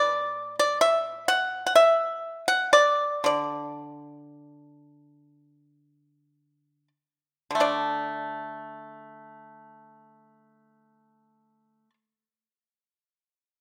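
A bright, percussive pipa, played with fingerpicks and sitting dry and up front, carries this pastoral, flowing fragment of traditional Chinese music alone from 0.0 to 11.9 seconds, moving in free rubato between 42 and 69 BPM in the D gong mode. The opening passage slows down until 7.6 seconds, when a new passage begins. A moderate recital-hall reverb surrounds the recording, which is cut from a longer piece.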